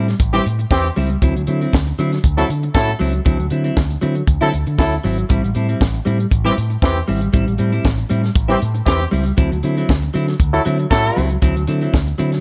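A tight funk drum kit with a dry, high-tuned snare drives this glamorous, danceable disco fragment, together with a bright, twangy clean electric guitar with subtle chorus, a picked electric bass through an envelope filter, and a roomy horn section with light vibrato playing stabs over Am7 and D9 in a dark, warm production.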